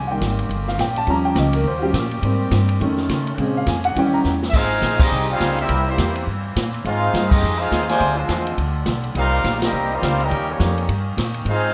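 A moderate scoring-stage reverb gives this brassy, swinging big band jazz excerpt a spacious sound, with a woody, thumpy pizzicato upright bass on gut strings and an up-front acoustic drum kit with a boomy kick and medium-tuned snare driving the swing. A vintage upright piano with short sustain takes a solo over the opening, backed by sustained chords from a nasal, straight-muted trombone section, until a drum fill leads into a distant, roomy trumpet section carrying the melody at 4.5 seconds. A second muted trombone section, brilliant and soft in attack with light vibrato, plays a background line beneath the trumpets as the band punches out repeated accents.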